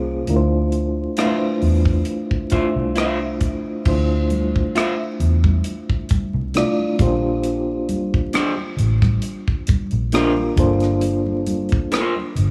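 R&B and neo-soul in D minor at 67 BPM with a lightly swung sixteenth feel, this introspective, smooth passage cut from a longer piece opens on a reedy electric piano with fast tremolo and a dark, round, foam-muted fingered bass, joined at 0.3 s by a tight, dry funk kit of kick, hi-hat, rim click and crash, then at 1.2 s by a slightly broken-up picked guitar through a small old amp carrying a second line, and at 4.3 s by soft-handed, thick-skinned congas in the background, all under light reverb, vinyl crackle and studio ambience as the chords move from Dm9 to Bb69 to Gm11.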